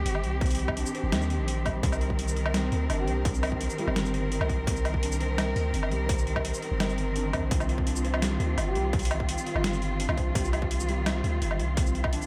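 A lush, bowed cello section holds sustained C minor chords with a sidechain pump, while a felt-muted upright piano plays soft, dark arpeggios through delay in the background and a deep, sine-like 808 bass sits up front, opening this spacious, cinematic half-time drum and bass excerpt at 169 BPM. A gritty, overdriven sampler-style kit of pitched-down hi-hat, shaker, high-tuned snare and woodblock joins with a distorted, tape-warm electronic kick set back in the mix. A breathy, flute-like synth lead with chorus and delay surfaces briefly at 3.0 and 8.7 seconds, all bathed in a dreamy church reverb.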